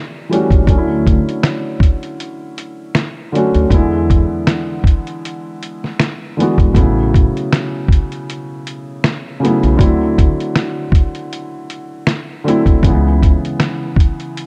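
Dark, warm production frames this melancholic, reflective lo-fi hip hop fragment, where a soft, felt-muted upright piano with audible action noise and cassette-tape haze sits up front beside a compressed, pitched-down sampler-style drum kit of thumpy kick, fat snare, hi-hat and finger snaps, while a woody pizzicato upright bass stays in the background until 13.4 seconds over swung sixteenths and chords moving from Dmaj9 through E7 to C#m7.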